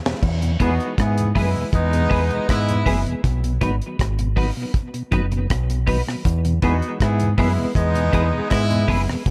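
A drum fill opens this sunny roots reggae excerpt before a dry, dark drum kit with a high-tuned snare and tight kick settles in beside a round, up-front dub bass and a mellow tonewheel organ turning through a slow rotary speaker and tape echo in the background, while from 0.6 s a punchy horn section with light vibrato and tape echo joins a clean, scooped electric guitar dressed in ensemble chorus and echo, all over a simple E-to-B-and-back chord change in a light studio reverb.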